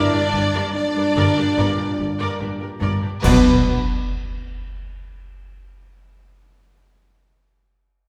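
In a straight 4/4 at 72 BPM, this brief, dramatic and heroic cut from a longer epic orchestral film score in B harmonic minor opens on a G minor chord, with two violin sections carrying the melody and a second line in the background over expressive, gliding violas, while punchy French horns and dark, distant trombones hold sustained chords above a rich cello and close double bass foundation. At 3.2 seconds the harmony lands on B minor as clash cymbals and concert bass drum strike a close, dry band accent up front, and a huge, bright but very quiet impact rings on until 6.6 seconds. The whole sits in a lush, reverberant hall with a 1.6-second decay.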